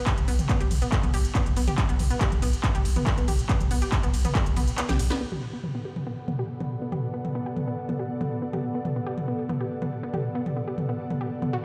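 Hypnotic, driving peak-time techno opens on a drop where a heavy overdriven kick pounds and thick, saturated sub bass pumps beneath a detuned sawtooth pluck riff with chorus and delay and an up-front kit of cracking snare, smooth hats, claps, ride and toms, until a drum fill and band accent near 5.1 seconds give way to a nasal, evolving pulse-wave drone and an ethereal, airy pad with tremolo and ensemble chorus, all heard in a bare stone room on a big sound system.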